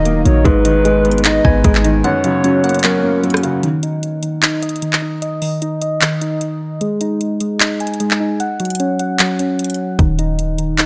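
Lightly reverberant, this melancholic yet hard-hitting half-time trap excerpt at 151 BPM opens over Abm and Gb with a hollow, woody clarinet-like synth lead carrying chorus, vibrato and delay, a muted felt upright piano with audible action noise, and a very quiet, moody ambient pad, all of which fall away by about 3.7 seconds, leaving up-front round, mellow electric-piano-like synth keys arpeggiating through chorus, a low-pass filter and delay over a trap kit of hard-clipped kick, metallic hats, handclaps and rim clicks, while a boomy, clean sine 808 bass drops out at 2.0 seconds and returns at 10.0 seconds.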